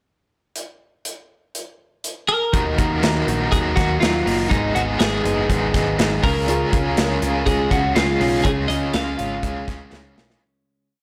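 A brisk indie backbeat at 122 BPM from an up-front big rock drum kit with a boomy kick drives this short, nostalgic and youthful jangly indie pop piece, where a bright, twangy twelve-string electric guitar carries a motif-based melody through spring reverb over a biting overdriven guitar strumming open chord shapes with tremolo, a clean direct-recorded guitar rolling fingerpicked arpeggios with warbly pitch drift, a round, punchy picked bass playing driving eighth notes, and a worn, slightly detuned upright piano holding very quiet chords from 6.5 seconds, in a blown-out recording with light reverb that fades out from 8.5 seconds into a closing drum fill at 9.9 seconds.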